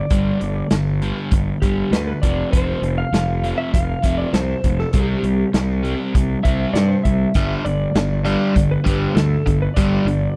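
A clean lap steel guitar, played with fingerpicks and slide, carries the melody through volume swells and slapback echo over a sunny, driving classic rock groove at 99 BPM in 4/4, where a crunchy guitar riff bathed in spring reverb, a round, fuzzy fingered electric bass and a gritty, punchy garage drum kit move through G5, F5 and C5 chords, joined at 7.4 s by a bright, up-front overdriven electric guitar riff, in a dry, close 1970s-style studio sound cut from a longer piece.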